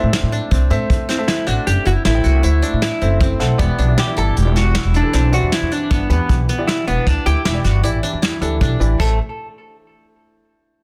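Dense and heavily limited with light reverb, this brooding, driving progressive excerpt in 7/4 at 156 BPM sets a dark, clean hollow-body jazz guitar melody with plate reverb and digital delay over an intimate grand piano with audible action noise, bright fingerpicked qanun arpeggios, a woody pizzicato upright bass up front and a brushed drum kit in a small, pumping room, moving from Am to Em7 before a chordless break at 9.0 seconds.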